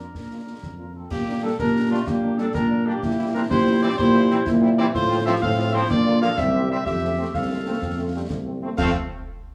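A festive, rousing military-style march for wind band in 6/8 and F major at 125 BPM opens with a distant, roomy cornet carrying the melody in a light vibrato over a dark woodwind section, a mellow euphonium in the background, a tight, very quiet French horn section and an up-front tuba on the bass, with concert snare, bass drum and clash cymbals entering at 0.1 s, a pure, hollow flute ensemble adding a soft-edged second line from 1.0 s and a bright trombone section holding sustained chords from 1.4 s, in a moderate large reverb as the harmony moves from Bb to a closing F in this passage cut from a longer piece.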